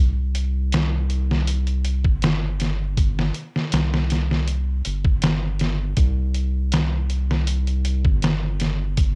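A home cassette recording with digital ambience carries this dark, melancholic trip hop excerpt at 80 BPM in straight 4/4, where a round, deep analog bass blending square and sine tones with a wave-folded, evolving, mellow sustain sits up front from 0.0 seconds, joined at 0.3 seconds by a gritty, compressed, pitched-down sampler-style drum kit with a thumpy kick, medium-tuned snare, hi-hat and tape-warm studio ambience.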